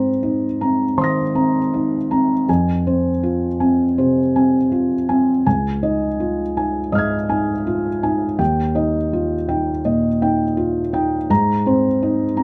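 Peaceful and intimate, this short neoclassical minimalist piano piece unfolds in an unhurried rubato 4/4, carried entirely by a solo felt-muted upright piano that sits up front in a moderate studio ambience. The thick felt gives the instrument a soft, mellow, muffled tone across a span from the low bass to high treble. Its gentle harmony moves through open add9 colorings and a minor chord before settling back home at 11.3 seconds, as the passage, cut from a longer work, closes at 12.4 seconds.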